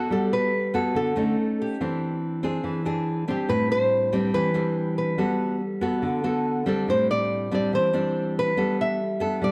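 Two up-front, fingerpicked nylon-string guitars begin together in this romantic, breezy bossa nova cut from a longer piece, set in G major at 142 BPM in a straight 4/4: one carries a small-toned melody between G4 and E5, while the other, deep and classical with fresh strings, plays the accompaniment through Gmaj9, A7#11, E7alt and Am11 before settling on Em11/G, with the pair heard in a dark production and a moderate echo-chamber reverb.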